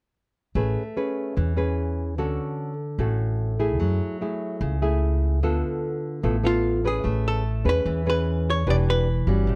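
A clean, hollow-body archtop guitar, miked and amplified, steps up front at 6.5 seconds to carry the melody, its picked, compressed tone touched by plate reverb. This short bossa nova excerpt, cut from a longer piece, feels sophisticated and sunny in a straight 4/4. From 0.6 seconds a classical nylon-string guitar plays thumb-plucked accompaniment, with audible finger squeak, while a pizzicato upright bass with steel strings gives a thumpy, woody low end. Both sit up front and run to the close. The harmony moves through Amaj9, Dmaj7, F#m9 and Dm6 before a second section returns to Amaj9 and shifts to Em7. The production is dark and warm, with little room reverb.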